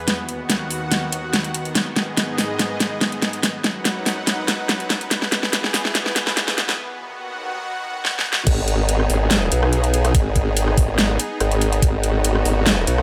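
Half-time 4/4 at 143 BPM drives this heavy, chaotic wobble dubstep cut in G# minor, where a lush, detuned supersaw pad pumps through sidechained chords from B/D# to G#m to B/F# to E while an up-front dubstep kit with a huge snare and metallic hats builds through fills and a break before the drop at 8.5 seconds brings in a saturated, chorused formant-sweep wobble bass and a knocking electronic kick, all set in light reverb.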